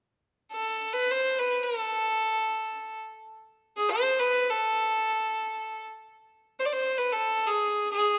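A lone violin enters at 0.5 s and carries this short Arabic fragment by itself, unfolding in free time in A maqam nahawand, tuned to A4 = 441 Hz. The mood is melancholic and hypnotic, with the line kept within a narrow span from G#4 to D5. The single bowed player sits up front, and the tone is nasal and earthy, with an airy bow and a light vibrato. A moderate concert hall reverb, lasting about 2.0 s, surrounds the instrument with a sense of open space. Cut from a longer piece, the passage runs until 8.2 s, holding one unbroken section throughout.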